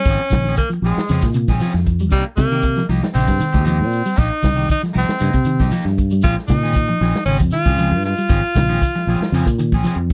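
An edgy tenor saxophone with a light vibrato carries the melody up front from the start, over a dark, clean guitar playing fingered arpeggios in the background and a grainy shekere. This is a hypnotic, intense afrobeat excerpt at 116 BPM in Bb dorian, moving from Bbm9 to Cm7 and back. A round, fingered bass sits prominently alongside a vintage kit with a punchy kick and rolled-off top, while a twangy, slightly broken-up guitar adds picked stabs, all captured in a dry, close 1970s-style studio sound.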